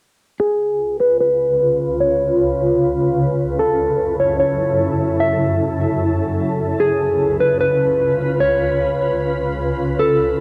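A hazy home cassette recording with moderate spring reverb carries this melancholic half-time hip hop fragment at 150 BPM in 4/4, tuned to A4 = 439 Hz, with a filter sweep running through it. A dark, clean electric guitar sits up front from 0.4 s, playing a fingered melody through cassette tape, tape echo and a low-pass filter. From 1.1 s an ethereal, detuned, granular pad with an octave-up shimmer holds sustained chords that move from C#7 to F#m7 and back to C#7.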